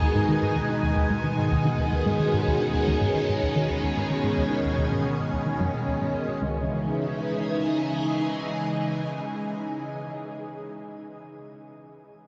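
Mysterious and expansive, this short excerpt of ambient, sequencer-driven space music in C# minor at 110 BPM sets swirling, vintage phased string machine chords with ensemble chorus, phaser and shimmer reverb up front over a tight, driving sequenced synth riff with detuned filter-pluck tones and delay that stops at 6.7 seconds, while a bubbling, resonant stepped-filter texture sits in the background until 6.4 seconds, when the harmony moves from G#m to C#madd9, all within a dark production and a huge, wet reverb.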